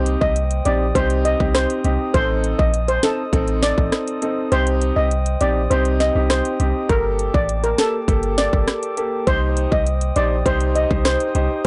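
A blown-out, overdriven sound with little reverb and a dulled top end frames this hypnotic, sultry dancehall excerpt at 101 BPM. An up-front electronic kit, its tight kick, metallic hats and clipped, sharp snare pushed into overdrive, sits over a deep, boomy 808-style bass, while a baby grand piano with long sustain and a faint, ethereal glass harmonica that pumps with the sidechain carry the chords. A mellow, shimmering steel pan plays the melody through digital delay, and the kick drops out between 4.5 and 6.9 seconds.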